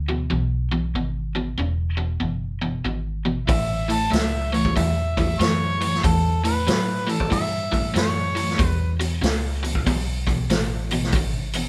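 A mellow, overdriven harmonica with light vibrato and scooped notes takes a jazz-style solo from 3.5 to 9.0 s in this gritty, swaggering blues rock and southern rock excerpt at 94 BPM, swung in E major, riding over a double-tracked, picked electric guitar riff and a dark, round, foam-muted fingered bass that run throughout, while a vintage drum kit with a punchy kick, a medium-tuned snare and a rolled-off top enters at 3.5 s, the band captured live in one room with moderate studio reverb as the harmony moves from E to A7 and back to E.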